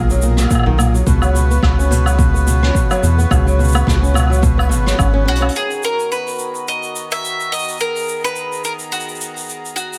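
Swung sixteenths at 107 BPM in 4/4 drive this hopeful folktronica piece in B major, where a distant brush kit of hi-hat, rim click, shaker and woodblock plays on through the whole excerpt, joined by an overdriven electronic kick until 5.1 seconds and by a round analog bass and woody, fingerpicked ladder-braced guitar arpeggios with tape echo through the first 5.5 seconds, while reedy accordion chords with light tremolo tuning sustain throughout. Alongside a drum fill at 5.3 seconds, a bright bowl-back mandolin enters to carry the melody with tape echo, and a filter sweep then passes over the accordion.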